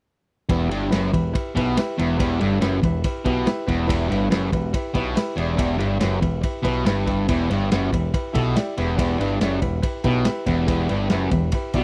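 A straight, driving 4/4 pulse runs through this gritty classic rock excerpt, which holds a single E minor chord from start to finish. A double-tracked, distorted electric guitar sits up front with a bright, picked riff in its low register, the loudest part in the mix. Beneath it, a growling picked electric bass adds overdriven weight from its direct and amped sound. A vintage drum kit drives the groove with a tight kick, a medium-tuned snare and ride cymbal, its tone muffled and lo-fi with a rolled-off top, as if captured in a small room. A clear concert grand piano supplies quieter accompaniment higher up, its natural tone sitting beneath the guitar. All four parts play together from 0.5 to 11.8 seconds in a dry, close recording with a 1970s studio character.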